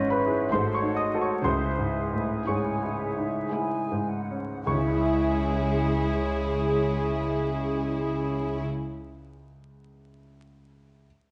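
A vinyl crackle and a moderate scoring-stage reverb frame this brief, tragic and brooding classical excerpt in C# minor, a slow 3/4 played with rubato that slows down over its first 4.7 seconds. A clear, present grand piano carries the melody up front across the whole 11.1 seconds, ranging from deep bass notes to bright high ones. Behind it, a soft-attacked symphonic violin section plays sul tasto on a floating melodic line in the background, while a dark cor anglais with vibrato, a dark studio violin section, an airy, hollow flute section and a background clarinet weave second lines. A woody, lush viola section fills out the accompaniment, a very quiet, distant French horn section holds sustained chords, and a rich cello section joins a distant double bass section on the bass, all the bowed strings playing sul tasto. Within the opening seconds the harmony moves from C#m/G# through G#7b9 back to C#m, and the orchestra drops away at 8.6 seconds, leaving the piano alone to finish.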